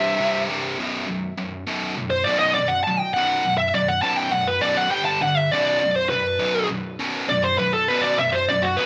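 Epic and heavy, this short metal fragment sets a distorted, up-front lead guitar solo from 0.8 seconds over a bright, double-tracked high-gain rhythm riff low in the range, with the chords moving through B5 and G5 in a rough home demo mix with light reverb.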